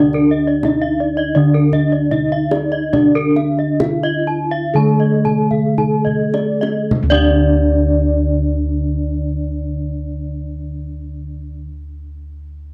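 In a straight 4/4 that slows over its first 6.9 seconds, somewhere between 51 and 92 BPM, this brilliant, shimmering excerpt of Balinese gamelan in D pelog rests on round, beating bossed gongs carrying the bass, while tight kendang drums play a fill from 5.5 seconds and drop out at 7.5 seconds. A mellow bronze metallophone struck with padded disc mallets carries the melody with a touch of tape echo, above a dark, smooth horn-mallet metallophone accompaniment. Two more metallophones spin arpeggios, one of them bright and airy, with their paired tuning producing shimmering beats, all captured in a dry, close 1970s-style studio sound with light reverb.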